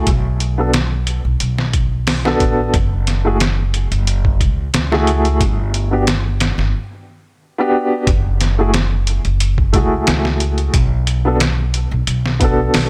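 A small-room ambience frames this dark, melancholic trip hop fragment, cut from a longer piece, at 90 BPM in F# phrygian, with a muffled, pitched-down sampler-style drum kit under studio reverb, its thumpy kick, medium-tuned snare and hi-hat sitting up front. A pizzicato upright bass on gut strings, woody and tube-saturated, holds the low end while an upright piano with long sustain, tremolo and tape echo plays chords moving through Bm7, F#m9 and Gmaj7. A break arrives at 6.7 seconds before the music moves into a new section at 8.1 seconds, returning to F#m9 and Bm7.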